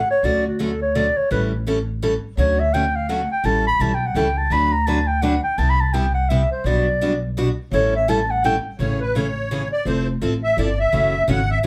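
Playful and swinging, this short cut of acoustic string swing in the jazz manouche style moves at 168 BPM in a lilting 3/4 in D major, with a bright, freshly strung picked steel-string guitar and a woody, thumpy pizzicato upright bass carrying the accompaniment throughout. A dark, breathy clarinet takes the opening solo in an intimate subtone with vibrato and scooped notes, set in slapback echo and plate reverb, until 8.6 seconds. At 8.8 seconds a reedy, shimmering musette accordion takes over the solo, all heard from further back in a small, wet room.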